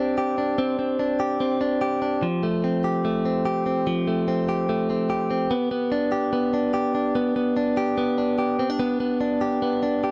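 At a brisk 146 BPM in a straight 4/4, this breezy, bright indie pop fragment in G mixolydian features a lone clean electric guitar, recorded direct, picked and compressed, sitting up front as it plays solo between F3 and G4 for the full 10.1 seconds. The chords move from Csus2 to Fadd9 before landing on G at 5.5 seconds, where the opening section repeats. A light reverb and the grain of cassette tape color the short excerpt, which is cut from a longer piece.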